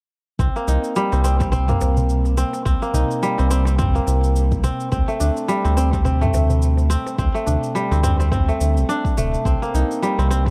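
This earthy, hypnotic organic downtempo excerpt opens at 0.4 s with a crisp, ringing fingerpicked kora playing arpeggios through a digital delay, set up front over a round, detuned analog bass, a deep layered electronic kick, and electronic cabasa and toms with a small-room character. At 1.1 s a close, dry clay-shell darbuka joins from the background, adding natural-skin texture to the 106 BPM groove, which swings on the sixteenths in C dorian. The harmony moves from Cm7 to D5 and back to Cm7, all within a dark, warm production with digital ambience.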